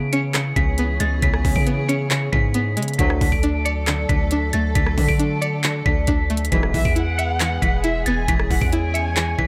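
Wistful and dreamy, this half-time trap fragment sets an eerie, inharmonic synth bell melody with tape echo high above a twangy resonator pluck, a dark, bowed string section holding sustained chords, and a deep, mellow 808-style bass moving through C#m7, D and E. An up-front trap kit with a knocking kick, crisp hats, handclaps and rim clicks drives it, while tight brass stabs land at 3.0 and 6.5 seconds. From 6.7 seconds a lush violin section adds an expressive second line with vibrato and portamento, all inside a small room ambience.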